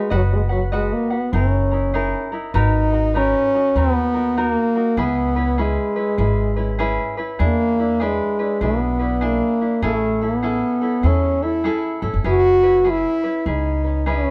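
A stone room's moderate reverb, about 1.1 seconds long, surrounds this live, in-the-room Hawaiian passage, which sways at 99 BPM with a swung 4/4 feel and a sunny, dreamy mood. Up front, a clear French horn sings the melody in a classical style with light vibrato, while a mellow tenor ukulele fingerpicks a gentle accompaniment beneath it. A woody, pizzicato upright bass with steel strings, also up front, outlines the harmony from B/F# through G#m9, C#m7 and E7 to Amaj7 before settling on F#9sus4 at 12.3 seconds.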